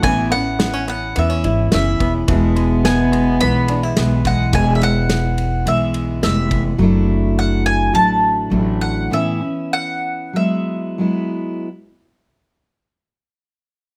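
A lightly reverberant, close acoustic sound opens this short cut from a longer gentle, pastoral folk piece played by a small band in an easy 4/4 with a loose, uneven pulse. Up front, a woody, double-strung mandolin carries the melody high over a full-bodied dreadnought steel-string guitar picking the accompaniment and a thumpy, gut-strung upright bass plucked pizzicato. A plunky, twangy open-back banjo adds fingerpicked arpeggios only until 4.6 seconds, while a loose indie drum kit with a punchy kick, medium-tuned snare and ride cymbal pumps in a small room before dropping out at 6.6 seconds. Between 2.3 and 4.5 seconds a single bowed cello with a nasal, reedy, period-style tone and light vibrato holds a brief second line. From 6.8 seconds the music slows, the bass falling away at 9.1 seconds as the harmony moves from Dadd9/F# back to Aadd9 and settles on Eadd9, leaving mandolin and guitar to close.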